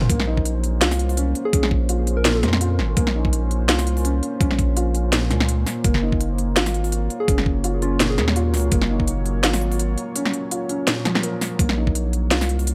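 Half-time drum and bass in Bb minor at 167 BPM with a swung, tense and dark feel, this drop excerpt sets a felt-muted upright piano's soft, lo-fi gritty arpeggios with analog delay over a moody sawtooth pad pumping under sidechain, a thick saturated sub bass, an up-front kit of cracking snare and crisp hats with toms, an overdriven knocking kick that drops out at 9.1 seconds, and brief warbling FM lead phrases with tape echo at 1.5 and 7.2 seconds, all moving between Bbmadd9 and Gb in a dry, gritty hardware sound.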